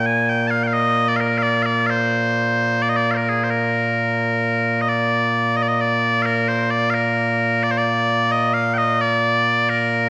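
Stirring and ceremonial, this short cut from a longer piece of Scottish pipe music in Bb major sets loud, piercing solo bagpipes up front in a straight 6/8 at 87 BPM, their continuous bright tone ranging from Bb2 to A5, washed in the wet reverb of a scoring stage and colored by the warbly pitch drift of worn old cassette tape, moving from its opening section into a second one at 4.9 seconds before cutting off at 10.1 seconds.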